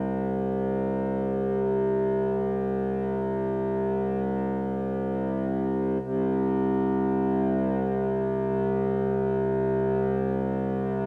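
Unfolding in free time, this haunting, spacious piece of world meditative music is a short excerpt built on a solo pedal harmonium playing between C2 and C3 and tuned to A4 = 444 Hz. The reedy, breathing harmonium sits up front with a mid-forward presence, colored by cassette tape and tape echo. A wet spring reverb and small-room ambience give the home cassette recording a spacious, haunting air across its 11.1 seconds.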